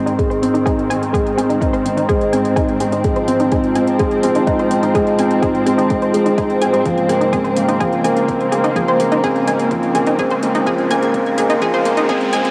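Hopeful and tender, this short build-up from a longer piano and strings electronica piece moves in a straight 4/4 feel. A felt-muted upright piano sits up front with a soft, intimate riff, its thick felt and audible action noise given a vintage character and a touch of tape echo. Alongside it, a con sordino string section holds veiled, dark sustained chords with vibrato, pumping against the sidechain, while an analog pluck spins detuned sawtooth and square-wave arpeggios with a sub octave, chorus and tape echo, a filter sweep shaping it across the whole passage. An overdriven electronic kick and a deep house kit with metallic hats and toms add a gritty, cassette-tinged pulse. The harmony moves from Ab to Bbmadd9/Ab at 6.9 seconds, and a very quiet riser enters at 9.7 seconds. The whole mix has a homespun cassette quality, bathed in a lush hall reverb.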